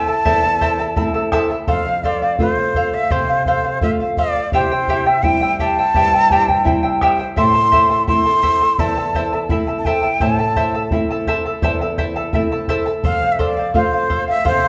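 A breathy cane quena sings a wistful, melancholic melody with vibrato and tongued notes, up front over a shimmering, fingerpicked charango with double strings and a small, fingerpicked nylon-string guitar, while a round, distant bombo joins at 0.3 seconds in this 84 BPM Andean folk passage in A minor, cut from a longer piece, moving through Am, F and C in a moderate recital hall reverb.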